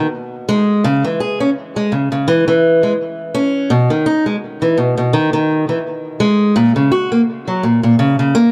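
A dark, warm production with light reverb frames this short folktronica passage, cut from a longer piece and carrying an autumnal, wistful mood. A bright fingerpicked acoustic archtop guitar sits up front and plays alone for the full 8.5 seconds, its notes colored by tape echo. The lines move with a gently swung sixteenth-note feel.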